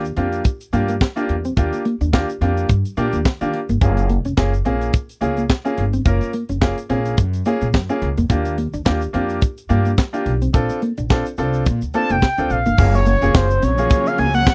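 A dry, close studio sound frames this feel-good, danceable slice of early-eighties boogie funk, where a tight, up-front drum kit with a high-tuned snare, handclaps and crash cymbal plays alongside a woody pizzicato upright bass, clear, open baby grand chords, a dark, clean fingered electric guitar riff with analog chorus and a grainy tube shaker tucked behind, until a smooth sawtooth synth lead with ring modulation, vibrato and slapback echo takes the melody at 11.9 seconds and a lush, bowed string section with portamento joins in the background at 12.8 seconds.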